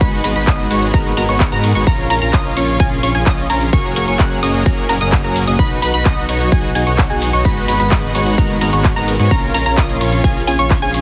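A straight 4/4 pulse at 129 BPM drives this triumphant, euphoric festival progressive house clip: a punchy, up-front electronic kick and a house kit of cabasa, handclaps, bright hi-hats and ride cymbal sit under a dark, chorused detuned saw bass with tube saturation, a huge supersaw riff with cassette-tape color and digital delay, a mellow unison pluck playing high arpeggios through delay, and an airy pad holding sustained chords in the background, with the bass, supersaw, pluck and pad all sidechain pumping through a G#m7, A#m, F#add9, B progression, set in light reverb and a heavily compressed radio sound.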